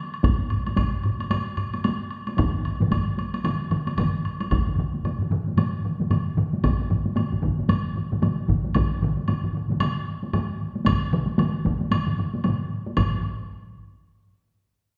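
This driving, powerful excerpt of Japanese traditional taiko drumming opens with a woodblock clicking in at 0.1 s, quickly joined at 0.2 s by three taiko ensemble parts struck with heavy and hard sticks. The tempo sits at 113 BPM in 4/4, with a 60% swing on the sixteenths giving the pulse a lilting push. A fourth taiko ensemble part, also played with heavy sticks, enters at 2.4 s, thickening the pounding texture as the piece moves from its opening section into a longer middle stretch. The drums sound close and immediate, one of them especially dry and another set in a small room, while the woodblock has a woody, vintage, band-limited tone sitting quietly beneath them. The whole ensemble is framed by a wet recital-hall reverb, lending the performance the resonant air of a church or concert hall before it breaks off mid-flow.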